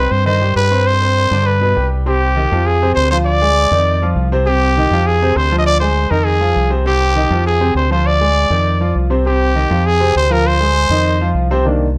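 A driving 200 BPM salsa groove in 4/4 sets a passionate mood, as a raspy, growling trumpet carries the melody up front over a clear, intimate concert grand piano with audible action noise and long sustain, while a round, dark fingered electric bass anchors the low end in a dark, lightly reverberant production cut from a longer piece.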